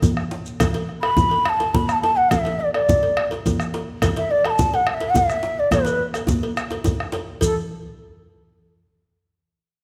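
Close, detailed microphones set inside a moderate recital-hall reverb give this powerful, earthy West African drum ensemble a clear, present sound. It is cut from a longer piece in a straight 12/8 feel, and the percussion plays together from 0.0 s. The round, vintage bombo anchors the low end, while high-tuned congas ring out close and dry under hard hands. A medium-tuned djembe with metal rattles adds a band-limited, hard-handed voice, a metallic cowbell sits in its own small-room space, and a grainy, compressed shekere adds a saturated texture. From 1.0 s a bamboo bansuri floats up front with a breathy straight tone, soft attack and rolled-off highs, singing a pentatonic line until 7.5 s.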